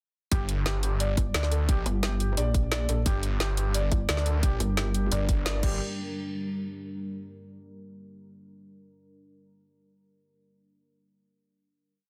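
A straight drum and bass groove opens at 0.3 seconds, with a tight, up-front electronic kick under an overdriven kit of woody snare, bright closed hats and crash, while a snarling, growling distorted saw bass chops out aggressive phrases in a dark, mechanical, technical style. A soft, felt-muted upright piano repeats a mellow eight-step arpeggio sequence through tape echo, pumping with sidechain compression, and a pulsing, heavy wobble bass with chorus joins at 1.2 seconds, its wobble speed changing. Late in the drop, at 4.0 seconds, a deep, moody ambient pad adds slow-blooming sustained chords ahead of a band accent at 5.5 seconds before the piece closes on a final hit at 5.8 seconds, all in a dense, heavily limited mix with light reverb.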